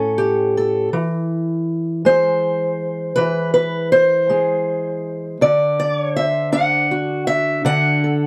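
Rollicking yet laid-back, this short excerpt of acoustic country blues moves in an unhurried 12/8 lilt. A lone fingerpicked steel-string acoustic guitar carries everything across its 8.3 seconds, ranging from deep bass notes up to bright high strings. Its tone is boxy with a parlour-guitar character, sitting up front in the mix. The harmony moves from A7 to E and then to D7 at 5.4 seconds, giving the passage a classic blues flavour. Close, detailed microphones capture the instrument intimately, while a moderate studio reverb adds a touch of space around it.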